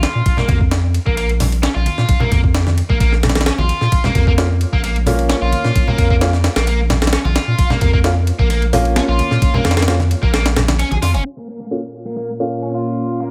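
An energetic, swaggering breakbeat groove in Bb minor at 131 BPM opens on a biting, double-tracked overdriven guitar riff with 12-bit sampler grit and dub echo, a deep saturated sub bass, an up-front gritty sampler-style kit with thumpy kick and high-tuned snare, and ringing hard-hand congas in the background, before a warm baby grand adds filtered stabs at 4.4 seconds, a filter sweep on guitar and piano takes hold at 11.3 seconds, and a warbling, nostalgic tape-like pad with chorus, phaser and sidechain pumping arrives at 12.0 seconds in this dry mix.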